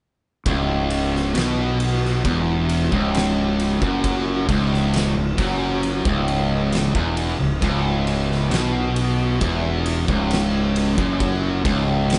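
This stoner and doom metal passage, cut from a longer piece, crawls along at 67 BPM in 4/4 with a straight feel, its hypnotic, ominous mood anchored in C# minor. A double-tracked fuzz guitar carries the riff up front between 0.5 and 12.2 seconds, picked in a low register from C#2 to B2 with a compressed, distorted tone. Beneath it, a fingered electric bass growls an octave lower, from C#1 to B1, its direct and amped signal thick with overdrive and fuzz. An oversized, low-tuned acoustic kit pounds through the same span with a punchy kick, a fat snare and dark ride cymbal, its gritty, saturated sound pumping inside a bright stone room. The band plays live in one room with light reverb, and the top end is rolled off above 10.5 kHz while the harmony rests on a single C#m chord throughout.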